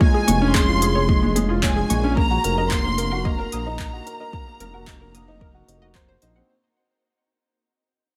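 A straight 4/4 pulse at 111 BPM, set by a deep, layered electronic kick and a deep house kit of handclaps and smooth hi-hats, carries this moving, melancholic piano-and-strings electronica excerpt: the dry mix sits in a drop that is also fading out, with a soft, felt-muted upright piano riff up front, a lush, bowed violin section singing a vibrato melody above it, a round analog pluck tracing bright arpeggios in the background through chorus, delay and sidechain pumping, and a dark, rumbling detuned saw bass pumping beneath from 0.3 s as the harmony moves from Dbmaj7 to Cm7b5.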